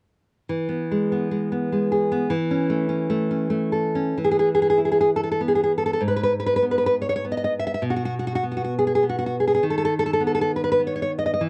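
A full-bodied, up-front nylon-string guitar plays a tender, nostalgic romantic classical fragment alone from 0.5 to 11.5 seconds, fingerpicked in a loose rubato 3/4 with audible finger squeak, framed by light reverb and the worn, warbly pitch drift of old cassette tape.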